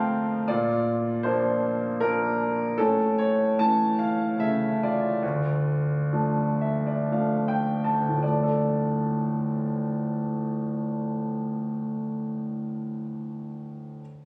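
Melancholic and reflective, this classical excerpt is a lyrical solo for grand piano in D minor, moving in a rubato 3/4 at 52-79 BPM over chords of Bb, A and Dm. The bright, up-front piano rings with long sustain across a range from D2 to A5, slowing from 2.8 seconds and adding a fill at 6.1 seconds before a new section arrives at 8.2 seconds. Captured on a phone in the room, it sits in a moderate recital hall reverb.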